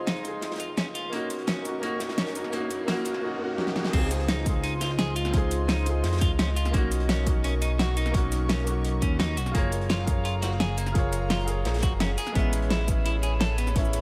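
Liquid drum and bass with a lush, uplifting mood, this excerpt opens on a build-up where a very quiet electronic riser sits beneath clear, natural baby grand piano accompaniment touched by digital delay and short sustain. An airy, breathy pad with a slow attack warbles softly in the background, colored by chorus and sidechain pumping. A smooth, detuned synth bass sits up front with a fast attack, while an electric guitar at the edge of break-up plays bright, twangy picked arpeggios through tape echo. Two drum kits run underneath: an overdriven pop kit with a fat snare, metallic hats, cabasa and crash cymbal, and a dark, gritty acoustic breakbeat kit tucked behind it with a rolled-off top. After a short drum fill, the drop lands at 3.9 s as a punchy, overdriven electronic kick enters, and the harmony keeps moving through major ninth chords under a light reverb.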